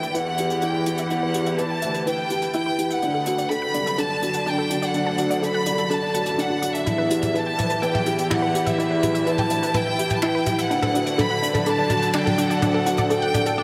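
Hypnotic, melancholic piano-and-strings electronica at 125 BPM in E minor, drifting between Em and D in a huge, wet ambient space as a clear, focused chamber violin section carries the melody up front over a dark string quartet's portamento-laced sustained chords, a felt-muted upright piano riff with audible action noise, a detuned sawtooth unison pluck tracing arpeggios through tape echo and a filter sweep across the whole 13.6-second build-up, a reedy, nasal bowed double bass section with tube saturation in the background, and a soft brush kit of finger snaps, hi-hat and toms, with shimmer reverb haloing the violins, quartet, pluck and piano.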